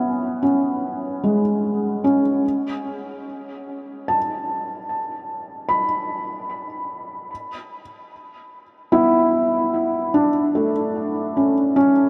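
Weightless and serene, this short ambient passage, cut from a longer piece, drifts at 74 BPM in 3/4 as a solo felt-muted upright piano, mellow and intimate with a thick-felt softness, sits up front with tape echo, moving from C#m7 through Aadd9/C# to Bm7 inside a huge, wet reverb with an 8.5-second tail, tuned to A4 = 441 Hz.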